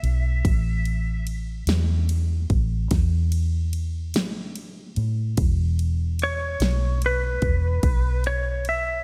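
Slow blues in a straight 12/8, gritty and soulful, built around a clean, twangy lap steel guitar that carries the melody as a slide solo with a slapback echo, moving from an A5 chord to E5 at 5.4 seconds. Beneath it sit a dark, round, foam-muted vintage electric bass and a punchy, layered pop drum kit of kick, fat snare and ride cymbal that stops at 8.8 seconds. All three parts sit up front in a light reverb, and the passage is cut from a longer piece.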